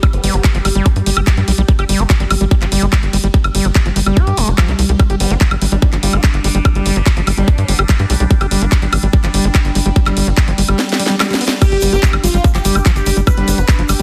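A straight 4/4 pulse at 145 BPM drives this psychedelic, alien slice of psychedelic trance in G major, built on a tight, up-front electronic kick, a garage kit with a cracking snare, hi-hat, handclaps, woodblock and crash, and a punchy sawtooth sequencer bass, while a squelchy, resonant acid riff pumps against the kick through tape echo. An evolving, morphing wavetable pad sits in the background with phaser, a very quiet formant-sweep wobble bass surfaces in brief bursts, and a faint electronic sub drop and swell marks the opening and the kick's dropout for a drum fill from 10.8 to 11.6 seconds. At 11.6 seconds a screaming, guitar-like synth lead with 12-bit sampler grit and vibrato arrives alongside a grainy acoustic tube shaker, all in a dense, heavily limited mix with little reverb.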